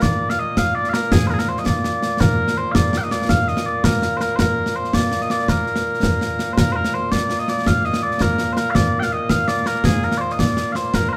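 Proud and stirring, this short cut from a longer Scottish pipe tune in 6/8 at 110 BPM in Bb major puts a mellow, sweet small bagpipe's continuous solo melody up front, alongside close, dry concert snare and bass drum with dark cymbals, the band playing live in a stone room whose 1.4-second reverb rings around them as the same strain comes round again at 6.6 seconds.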